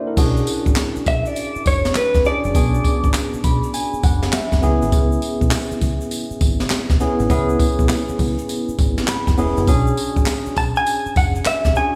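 A swung sixteenth-note groove at 101 BPM in 4/4 drives this bouncy, punchy new jack swing excerpt in B dorian, tuned slightly flat of standard pitch. A jazz brush drum kit sits up front with a punchy kick, a high-tuned snare, dark cymbals, hi-hat, handclaps, tambourine and a crash, while a grainy, bright tube shaker ticks along in the background. Underneath, a deep dub fingered electric bass gives a round, foam-muted low end, and a tine electric piano voices the Bm69 and C#m7 chords through its built-in speakers, adding fills around 3.1 and 8.8 seconds. A clean, compressed, picked electric guitar recorded direct carries the melody in two short phrases, from 1.1 to 3.1 seconds and again from 10.6 seconds, dressed in lush chorus and tape echo. Light studio reverb gives the mix a gentle sense of space.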